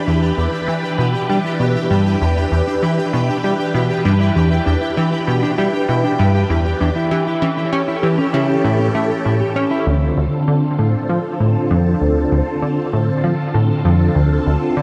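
Mysterious and cosmic, this ambient, sequencer-driven space music moves at 98 BPM in a straight 4/4, cut from a longer piece and settling in E minor before shifting to D minor at 9.9 s. A plucky analog bass sits up front with a punchy, funky riff, its filtered sawtooth and pulse tones colored by ring modulation, subtle chorus and analog delay. Above it, a phased string machine holds swirling, vintage sustained chords, bright and forward through ensemble chorus and phaser. A mellow electric guitar fades in with dark, clean, fingered arpeggios through analog delay, playing until 9.9 s, while a pulsing, tempo-synced gated texture of detuned triangle tones glimmers in the background with chorus and its own reverb. The harmony moves from Em7 to A7 and lands on Dm7, all bathed in a moderate plate reverb.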